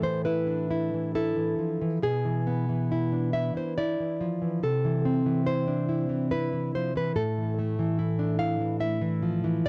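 Unhurried triple-time with a rubato pull, the beats stretching and yielding, carries this brief, passionate and melancholic fragment of a romantic piece for solo classical guitar. The nylon-string guitar, dark and fingerpicked, sits up front with an audible finger squeak, moving through minor-key harmony over just under ten seconds. A snug, damp booth ambience and the soft grain of a home cassette recording lend the sound an intimate, private air.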